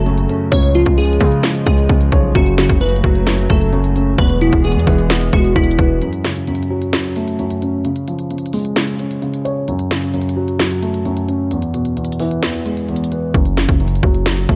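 Trap-flavoured hip hop in F# minor at 131 BPM with a half-time feel, eerie and melancholic, built on a dark, boxy concert grand piano that sits up front throughout, alongside glassy, detuned digital keys carrying the melody with chorus and tape echo, and a warbling, lo-fi, nostalgic pad of sustained chords tucked into the background. A heavy, aggressive 808-style bass with a gritty distorted edge and a trap kit with a hard-clipped kick, sharp snare and crisp hats drive the opening until 6.0 seconds, when the keys, pad and bass drop out. The piano carries a filter sweep through the break while the drums continue, and the bass returns at 13.3 seconds on a closing F#5 chord.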